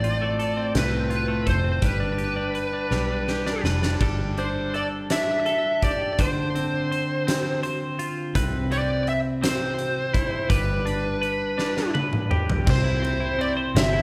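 A swaying, heartfelt pop ballad in a slow 6/8 at 55 BPM opens with the full band playing live together in a large studio room, a bright, overdriven lead guitar singing the melody over a bright, twangy twelve-string electric guitar dressed in spring reverb. Underneath, a vintage muted fingered bass sits dark and round, while a huge arena drum kit brings a fat snare, punchy kick and bright cymbals, rolling into fills at 2.9 and 11.6 seconds. The chords move from Dm7/A and G through Gsus2, Dm7 and Cmaj7 to G, settling on C at 12.7 seconds in this short cut from a longer piece.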